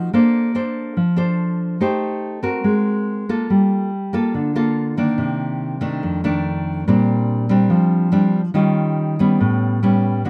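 Bossa nova at 142 BPM in a romantic, sunny mood, this brief cut from a longer piece features a solo fingerpicked nylon-string guitar in a classical style, with fresh strings and an up-front presence, recorded close and dry in fine detail as it moves through rich jazz harmony from Bbmaj9 through Gm9, F6 and Eb9 to A9 over about 10 seconds.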